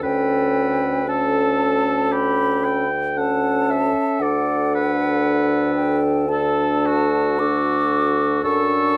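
A slow, lyrical and tender romantic classical movement for wind quintet in D major at 58 BPM with rubato, this 9-second excerpt features a hollow, pure silver flute singing the melody with vibrato over a distant oboe second line, a background clarinet, a horn with light vibrato and an up-front bassoon bass, moving from A7/D to D and then D/F# in a close, detailed recording with light reverb.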